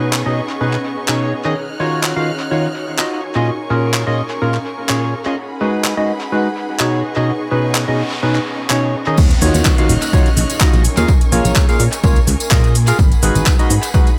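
Piano house at 126 BPM in Eb minor, this soulful, bittersweet passage is cut from a longer piece and moves with a light swing over chords of B69, Ebm9 and Bbm7. A hollow, percussive organ stab carries the riff up front, its chorus, tape grit, dub echo and sidechain pumping giving it a lively bounce. Beneath it, a smooth bowed violin section holds sustained chords with gentle vibrato, while an ethereal, warbling pad with a slow attack drifts in the background; both also pump with the sidechain. A garage drum kit with metallic hats, handclaps, shaker and crash supplies the groove, and a noise sweep and downlifter enters in the background from 7.9 seconds. At 9.2 seconds the drop arrives: a punchy analog kick sits up front, a round, mellow FM bass anchors the low end, and a tambourine joins behind them, all wrapped in an echo-heavy mix with light digital ambience.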